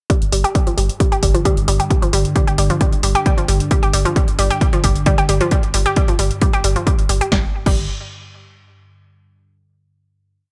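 A nasal, wave-folded analog pluck opens this driving, hypnotic peak-time techno piece, its bright six-step loop drifting against the bar over a heavy four-on-the-floor kick, a punchy snare, hi-hats and crash, with a thick, saturated sub bass rumbling between the kicks from 0.2 seconds. A deep, warbling pad with detuned unison voices and a sub octave drones darkly in the background from 1.3 seconds, and the pluck, pad and bass all pump with the sidechain. The groove gives way to a final note at 7.3 seconds, set in a bright 1980s-style digital production with light reverb.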